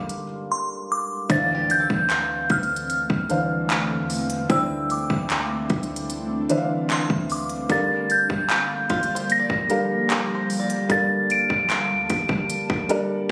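Captured on a phone in the room, with light reverb, studio reverb and compression, this moody, longing slice of contemporary R&B has an intimate feel. A crystalline FM synth bell carries the high melody through chorus and tape echo, while a felt-muted upright piano sits up front, soft and mellow, its action noise clearly audible. Beneath them, a clean, sine-like 808-style bass booms deep in the background, and a trap kit of hard-clipped kick, crisp hi-hats and handclaps gives the groove a produced, tape-warm presence up front. After a brief silence from 0.5 s, a very quiet electronic impact and a twangy, fingerpicked bluegrass banjo with tape echo arrive at 1.3 s, the banjo adding a percussive acoustic texture far back in the mix. From 2.4 s, an ethereal pad of detuned sawtooth and triangle voices with a sub octave fades in slowly through ensemble chorus and its own reverb, wrapping the moves between Gm9 and Dm9 in a hazy, sustained cushion.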